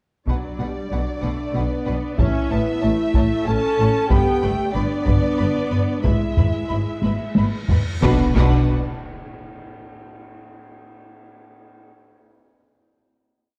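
A dark, warm production sits in a moderate scoring-stage reverb, giving this short, complete cinematic piece the scale of an epic film score in B minor. At 93 BPM in a straight 3/4, the mood is dramatic and relentless, driven by a close, hard-stick taiko ensemble playing a big drum ostinato from 0.3 s and finishing with a fill before ending at 9.7 s. A distant violin section carries the melody with smooth vibrato, doubling the tune at the octave, while a second, warmer violin section adds repeated notes and sustained chords with a smooth top. Lush violas weave a counter-melody, mellow French horns hold tight, sustained chords, and cellos in the background pair with distant double basses, which double the bass line, under a progression of Bm, A, G and E/G#. A huge, dark cymbal swell rises from 7.5 s into a low impact at 8.0 s, where the theme resolves onto a final B minor chord that rings to 10.0 s.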